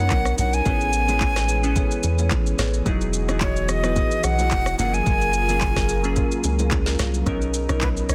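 A swung sixteenth-note amapiano groove in 4/4 rides on an up-front electronic drum kit with a deep kick, a woody soft-clipped snare, handclaps, rim click and shaker, joined by close, dry bongos and congas, a thick saturated sub bass, and a barely audible impact near the start. Over it, a bright, breathy jazz flute carries the soulful melody with vibrato, chiff and delay, while glassy chorused digital keys, an airy detuned pad with sidechain pumping, and warm marimba stabs with delay fill out the major-ninth chords. At 7.3 seconds the sub bass gives way to a round, dark log drum bass to close this excerpt of a longer piece.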